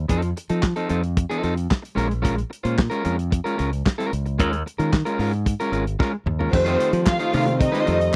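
A dry, close 1970s-style studio sound frames this sultry, driving disco excerpt at 112 BPM, built on a muffled, lo-fi soul drum kit with dark cymbals and a tight kick, a bright, punchy fingered electric bass and a clean, picked electric guitar moving through F7, Bbm7 and Eb9sus4. After a drum fill that ends at 6.5 seconds, a lush, woody violin section bowing sul tasto with vibrato joins alongside a boxy grand piano with audible action noise and long sustain. A crisp, band-limited group handclap sounds in the background at 7.1 seconds.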